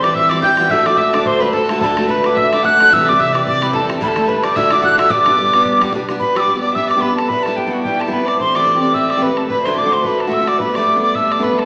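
Heard through a small speaker in a wet, church-like hall, this bright, lively Celtic reel excerpt with a gentle swing features an airy, up-front metal whistle carrying the melody over a nasal, reedy bowed fiddle and a very quiet, round mandolin that drops out at 5.9 seconds, while a bright picked dreadnought guitar drives the accompaniment, a damped, tight bodhran ticks in the background, and a woody pizzicato upright bass appears from 1.8 to 6.2 seconds.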